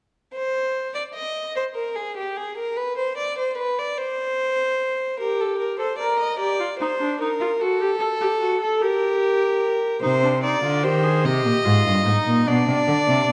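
A lone gut-string violin opens this solemn, contemplative baroque-style string quartet fugue at 0.3 seconds, moving in C minor at a slow 49 BPM in 6/8, with a rich, lightly vibratoed viola joining at 5.2 seconds and a reedy, period-style cello taking the bass at 10.0 seconds, each bowed by a single player in a dark production bathed in wet scoring-stage reverb, cut from a longer piece.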